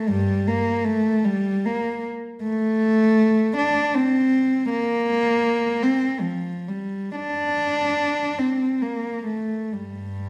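A lone cello carries this classical fragment, cut from a longer piece, playing unaccompanied from the first second to the end at 10.3 seconds. The tone is dark and intimate, with a light vibrato, soft attacks and an airy bow drawn sul tasto, ranging from G2 up to D4 in G minor. Set in 3/4, the phrasing moves with a free, rubato feel, the pulse drifting between 59 and 82 BPM. The mood is lonely and yearning, and the playing is expressive. The single player sits close and up front, while a recital hall reverb of 1.2 seconds wraps the sound in a wet, resonant space.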